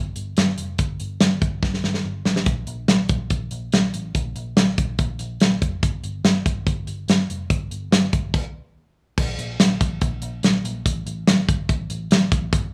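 A muted, picked electric bass opens this short cut from a jangly indie pop track at 143 BPM, its dark, round, foam-muted tone sitting low beneath an acoustic studio drum kit that enters at 0.2 seconds with a punchy kick, medium-tuned snare, hi-hat and crash. The drums are mid-forward and up front with a rolled-off top, tossing in a fill around 1.6 seconds and dropping into a stop from 8.3 to 9.2 seconds before the next section begins. The mood is nostalgic and youthful, and the dry, rough home-demo mix carries a small-room ambience.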